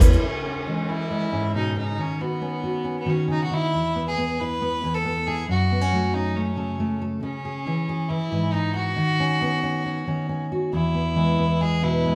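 Nostalgic and hopeful, this straight-feeling folk passage, cut from a longer piece, features a single bowed fiddle with a clear, earthy, somewhat distant tone carrying the melody up front, while a dark, full-bodied fingerpicked dreadnought steel-string acoustic guitar supports it, both playing from 0.2 to 12.2 seconds. The harmony moves from C#m through Badd9/D# and E5 to F#m, then returns to C#m and Badd9/D# before settling on E. The two players sound live together in one room, bathed in a wet, large studio reverb.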